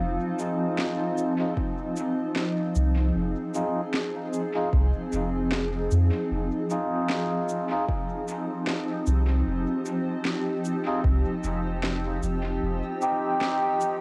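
Ambient dub at 76 BPM in F minor, meditative and hazy, where a cloudy, evolving granular pad holds sustained chords over a deep, round sub bass that drops out at 12.8 s, while reedy, breathy melodica stabs pass through dub echo and a filter sweep, an electronic shaker and woody snare trail echoes, and a punchy kick enters at 1.6 s, all on a home cassette recording with light reverb, cut from a longer piece.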